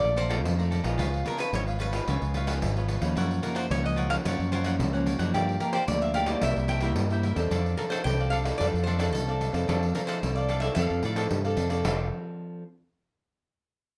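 A metallic, nasal lap resonator guitar, played with slide and fingerpicks, carries the melody through this sunny, joyful samba and choro excerpt at 110 BPM in F major, over crisp picked cavaquinho, fingerpicked classical nylon-string guitar, a warm, up-front fingered electric bass and a jingly pandeiro that sounds distant in a large room, captured with close, detailed microphones and moderate studio reverb, the melody ending at 11.3 seconds just before a brief new section begins at 11.8 seconds.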